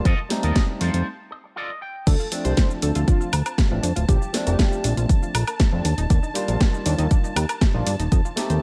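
A dry, punchy mix opens this sunny, groovy nu-disco cut at 119 BPM, where a barky, lightly overdriven tine electric piano with lush chorus and sidechain pumping sits over veiled, con sordino strings, a fat, detuned analog bass, a punchy tape-warm kick and a house kit with a cracking snare, shaker and woodblock, while a twangy envelope-filtered guitar riff gives way at 2.1 seconds to a bold, detuned unison lead with tape echo and a round analog pluck arpeggiating in the background over F7, Dm7, Bbmaj7 and Ebmaj7.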